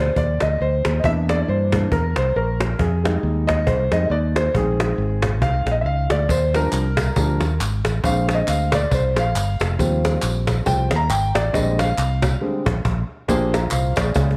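Light reverb and a small-room ambience give this uptempo gospel excerpt an intimate, up-front sound. It moves at 137 BPM in 4/4 with a swung eighth-note feel, and its mood is soulful and reverent. A warm concert grand piano takes a solo through the opening section until 13.3 seconds, its tone intimate and natural, with deep bass and audible action noise, while rich chords such as Eb69, Fm9, Bb9sus4 and Ebmaj9 unfold. A punchy fingered electric bass and a woody cajon with faint snares sit close in the mix, and at 6.3 seconds a tube shaker-style tambourine and group handclaps join further back in the small room. The band hits an accent at 12.4 seconds, and a drum fill at 14.2 seconds closes the passage.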